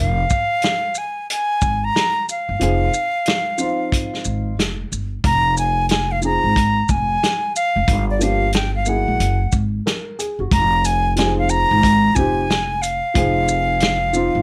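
A swung 16th-note groove at 91 BPM in 4/4 drives this cool, mellow jazz-hop cut in F minor, where a breathy, straight-toned, tongued silver concert flute carries the up-front melody over a dark upright piano with audible action noise and long sustain, a growly pizzicato upright bass, and a punchy vintage drum kit of kick, medium-tuned snare, hi-hat and shaker with a rolled-off top, entering at 0.3 s, all in light reverb as the harmony moves from Fm7 through Gm7 and Gb9 before returning to Fm7 at 10.5 s.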